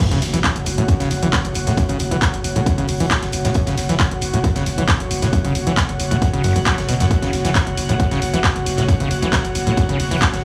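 Relentless and hypnotic, this driving peak-time techno drop at 135 BPM opens on a faint electronic impact that fades by 1.8 seconds, set against a heavy, tape-warm electronic kick and an up-front techno kit of crash, handclaps, warm hats and toms, alongside a very quiet acoustic studio kit with a medium-tuned snare, beneath a growling, buzzy 808-style bass on F#1, a squelchy, gritty acid riff set back in the mix with dub echo, chorus and pumping sidechain, and an airy, breathy pad sustaining between F#4 and F#5 in a small, lightly reverberant room.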